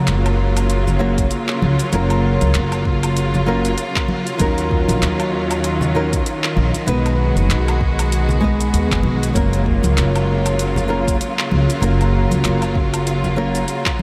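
A fingerpicked nylon-string guitar with tape echo, a rich bowed string section with vibrato and a gritty 12-bit sampler edge, and a woody, thumpy pizzicato upright bass open this smooth, relaxed sunset chillout excerpt, moving from F#maj7 through D#m9 and B6 and back. A deep house kit with metallic hi-hats, handclaps, shaker and woodblock joins almost at once, very quiet hard-hand congas enter at 0.9 s, and a deep, tape-warm electronic kick arrives at 1.2 s. The whole mix is soaked in a huge ambient reverb that gives it a dreamy glow.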